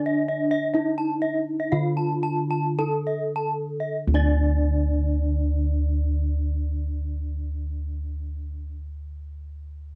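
In a straight 4/4 that slows through the first 4.0 seconds before settling into a new section, this shimmering, hypnotic fragment of Balinese gamelan at 49-68 BPM sets a wooden-mallet bronze metallophone melody and a higher, bright horn-mallet metallophone playing arpeggios, both ringing with the beating shimmer of paired tuning, over round, dark bossed gongs that sit up front as the bass, all captured by close, detailed microphones in a dry space.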